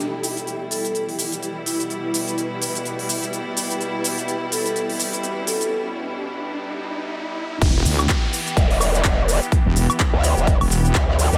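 A growling, bright bass with formant-filtered snarl and tube saturation bursts in at 8.6 seconds, joining a heavy, detuned wobble bass and a punchy layered kick that hit at 7.6 seconds to launch the drop of this swaggering, bouncy bass house excerpt in E minor at 126 BPM with a swung 16th-note feel. Before that, a build-up over a riser pairs clear, biting bowed strings on sustained chords with sidechain pumping and a cloudy, evolving granular pad, while a ringing vibraphone in a boxy small room, with vintage 12-bit sampler grit and delay, carries the melody in the background until 5.7 seconds, opening a short break. Throughout, a big-room dance kit with crisp hats, handclaps, shaker, woodblock and crash sits up front with a tape-toned, large-room sheen.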